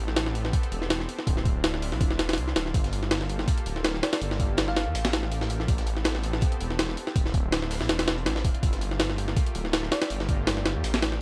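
A jungle kit drives this dark, atmospheric drum and bass excerpt at 163 BPM in 4/4, with a light swing on the 16ths. Its sampler-style hits are compressed and pitched up, with a thumpy kick, a high-tuned snare and tape-like grit, all sitting up front in studio reverb. From 2.7 s a very quiet acoustic breakbeat kit adds saturated, mid-forward hi-hat and snare with a rolled-off top. Underneath, a thick, menacing detuned saw bass holds sustained low notes with a beating, detuned tone, while a lush, warbling unison pad with chorus and vintage 12-bit sampler grit drifts behind through Am9, Dm9 and Gm9 in G dorian. A round, tine-like FM pluck with subtle chorus and dub echo surfaces briefly at 4.0 s and again near 9.9 s, its mellow decaying notes set back in the mix. The whole recording has a dry, gritty hardware character with a small-room ambience.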